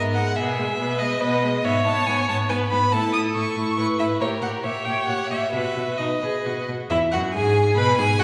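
Heard in the wet, reverberant space of a recital hall, this cheerful, lively cut from a quick classical-period string quartet movement in E major moves at 140 BPM in a rubato 3/4, with a rich, up-front first violin carrying the melody, a second violin with a smooth top and a focused tone on the inner line, a clear, close viola in accompaniment and an up-front cello on the bass, all bowed with vibrato through the 8.2 seconds as the harmony passes from G#m/B through A, A#dim7 and B before arriving on E at 6.9 seconds.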